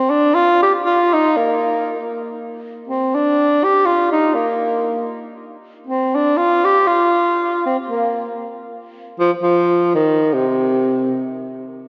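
Mexican folk in a festive, proud mood, this short passage from a longer piece moves in 3/4 at 119 BPM in B-flat major, with a lightly swung, rubato feel. A lone tenor saxophone carries everything from 0.0 to 11.2 seconds, ranging between C3 and G4 with a mellow, vintage tone, a punchy attack and a vibrato that gives it a classical polish. The horn sits up front, yet a lush hall reverb with a long 3.4-second tail bathes it, so the whole mix feels dreamy and soaked. The opening phrase runs to 8.4 seconds before the music turns to a new section that closes the passage. The result is a proud solo line floating in a spacious, reverberant room.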